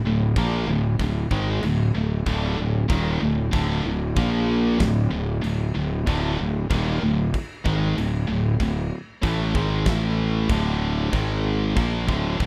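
Aggressive and epic, this short heavy metal cut from a longer piece moves in a heavy half-time feel. A growly, overdriven fuzz bass sits up front from the very start, joined almost at once by a high-gain, double-tracked guitar riff that is bright, picked and distorted. The big acoustic rock kit arrives at 0.4 seconds with a punchy kick, a fat snare and bright crash cymbals, its sound carrying the brightness of a stone room. The riff is built on power chords, dwelling on D5 and pushing briefly to Bb5, A5 and G#5 before settling on a D minor chord near the end. The mix is a rough home demo, dry and raw, with the bass and guitar loud and forward and the drums sitting a little behind them.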